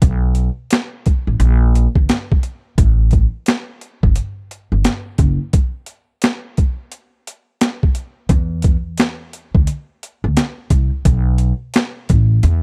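Upright bass and a boom bap sampler-style drum kit open this smoky, mellow jazz-hop excerpt together, settling into an 87 BPM groove in 4/4 with a 63% swing on the sixteenths. The pizzicato upright bass sits up front with a woody, dark acoustic tone from its steel strings, moving through a low range. The drums are gritty and compressed, pitched down and overdriven, with a thumpy kick, a high-tuned snare and hi-hat, and they carry the character of being re-recorded in a large room. A break arrives at 5.5 seconds, and at 8.3 seconds the piece shifts into a new section that runs to the end of the cut. The overall sound is dry and close, in the manner of a 1970s studio recording, with little reverb.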